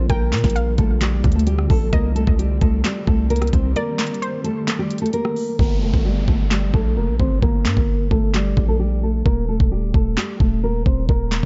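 A half-time trap groove at 131 BPM, with a knocking kick, sharp snare and crisp hats up front beside a punchy, heavy 808, drives this menacing, brooding hip hop piece in G minor, where a bright, thumb-plucked nylon-string guitar with finger squeak carries the melody through a low-pass filter and delay, a cloudy granular pad and a warbling lo-fi pluck with chorus fill the opening, and an electronic downlifter enters at 5.6 s as the hats fall silent.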